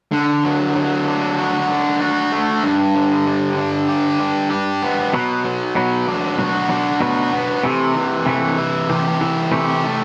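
A bright, fuzz-drenched electric guitar opens this upbeat, carefree rock excerpt up front with a picked, compressed riff over D, G, Bm and C6, joined at 5.1 seconds by a clean, twangy electric guitar riff lower in the mix, the two sounding like a band playing live together in a room with moderate reverb.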